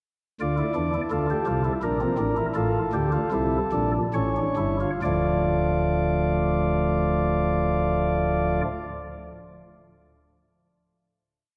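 Classical baroque-style fugue in a solemn, contemplative mood, played by a solo chamber organ on soft, up-front flute stops with a gentle chiff, its three-part imitative counterpoint slowing through a brief exposition before settling at 5.0 seconds onto a final chord that hangs in a wet church reverb.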